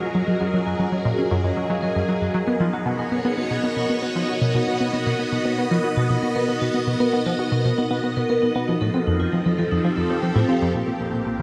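Ambient, sequencer-driven space music with a cosmic, expansive mood, heard as a short cut from a longer piece in a straight 4/4 feel. Up front, a tight sequenced synth drives a riff with a nasal, detuned sawtooth tone, a plucky filter and a moving notch, thickened by chorus and analog delay. A phased string machine, equally forward, holds bright, swirling vintage chords that bloom slowly and linger, colored by ensemble chorus and phaser, moving through F#maj7, Bmaj7 and F7 before landing on Bbmaj7(no3) at 10.7 seconds. A vibraphone struck with hard mallets fades in across its arpeggios, sounding metallic, dark and ringing with a slow motor vibrato and analog delay, until it stops at 10.7 seconds. Deep in the background sits a mellow, pulsing gated texture on a single high note, a tempo-synced triangle layer softened by chorus and its own reverb. The whole mix floats in a vast, echoing cathedral space with a long 5.8-second decay.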